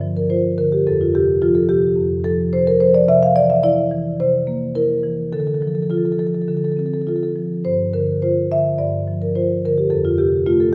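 A solo marimba played with soft mallets carries this contemporary classical piece, its rosewood bars sounding woody, mellow, round and airy as it sits up front, spanning F2 to F5 in G dorian at a rubato 107 BPM in 4/4, tuned to A4 = 439 Hz. The hypnotic, flowing harmony moves from G5 through Fsus2, C9 and Dm7 before returning to G5 and settling on F at 9.9 seconds. A moderate scoring-stage reverb with a 1.7-second decay surrounds this brief portion of a longer work.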